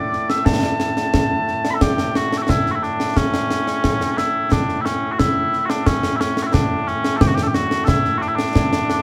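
Lightly reverberant and close, this proud, ceremonial fragment of Scottish pipe music in A mixolydian moves at 89 BPM in a straight 4/4, with mellow small bagpipes carrying a sweet, continuous, vibrato-touched solo melody up front while a concert snare drum and concert bass drum, acoustic with bright cymbals and a live-room ring, join at 0.1 seconds and play alongside them to the end at 9.0 seconds.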